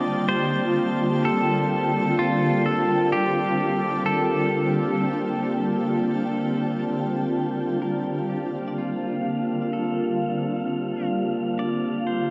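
Ambient at 64 BPM over a D minor chord, weightless and luminous, where a shimmering, detuned pad with octave-up granular sparkle sits up front beside a clean, fingerpicked pedal steel guitar playing a slide melody with volume swells and delay, over an evolving sawtooth-and-pulse analog drone and a breathy, wind-like tuned noise layer, all soaked in a huge, dreamy reverb, while from 7.8 s the steel fades in and the pad takes a filter sweep, and a very quiet, compressed clean electric guitar adds brief picked arpeggios at 8.7 s.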